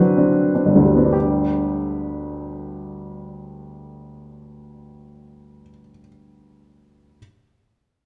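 In free time and slowing over the first 1.1 seconds, this hopeful romantic character piece in G major, cut from a longer work, moves from a D7 chord to G at 1.1 seconds on a solo upright piano with a woody, vintage, smooth tone and short sustain, sitting up front across G1 to C5 inside the wet reverb of a recital hall and a dark, warm production.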